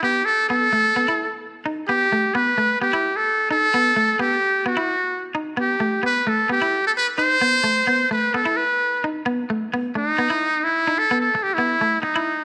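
A moderate echo-chamber reverb, with a decay of about 2.1 seconds, surrounds this short highlife excerpt cut from a longer piece, tuned a touch low at A4 = 437 Hz. At a straight 130 BPM in 4/4 and in E harmonic minor, the mood is warm and bittersweet. A trumpet with a metal mute carries the melody from start to finish, its tone brilliant yet buzzy and thin, close-miked and up front, with a jazz-style vibrato that gives the solo line its voice between D#4 and C5. Underneath, a clean electric guitar provides picked, bright accompaniment in a range from A3 to E4, also placed up front but sitting lower in the balance than the trumpet. The harmony moves through Gadd9, B and Em, returns via Gadd9/A, B and Em, then shifts to Am and B before settling on E5 at 9.3 seconds and closing on A5 at 11.1 seconds.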